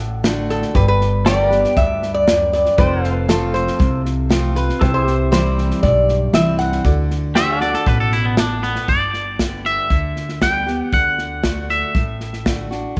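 A lightly reverberant studio sound frames this easygoing, nostalgic honky-tonk country excerpt, where a nasal, metallic lap resonator guitar carries the melody over woody upright bass, a punchy, airy drum kit, full-bodied picked acoustic guitar, jangly tack piano and chorused pedal steel chords until a bright, twangy electric guitar with tape echo enters at 7.4 seconds.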